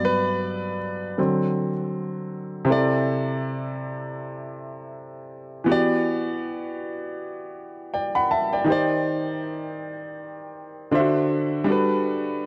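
A solo grand piano opens this tender, romantic R&B fragment, its clear, natural tone placed up front and close enough that the audible action noise of the instrument comes through. Across the full 12.5 seconds, the piano ranges from G2 up to B5 over a gently swung sixteenth-note feel in 4/4. The harmony moves from Gmaj7 and D7 through C69 and Em7, turns to a shaded Cmadd9/Eb near 8.7 seconds, then passes through D7 to settle on Gmaj9. A moderate plate reverb with a long tail surrounds the intimate playing, and the overall production leans dark and warm. Cut from a longer piece, it plays like a brief, heartfelt interlude.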